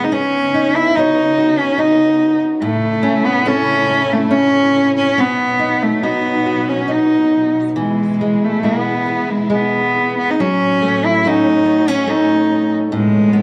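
Pastoral and tender, this 13.4-second excerpt of a Celtic slow air at 71 BPM in a rubato 3/4 sets a rich, bowed cello melody with vibrato up front over fingerpicked steel-string acoustic guitar with audible finger squeak and a lush symphonic string section holding sustained chords with portamento, moving through Badd9, A, B, E and F#m to Aadd9 under light reverb and close, detailed microphones.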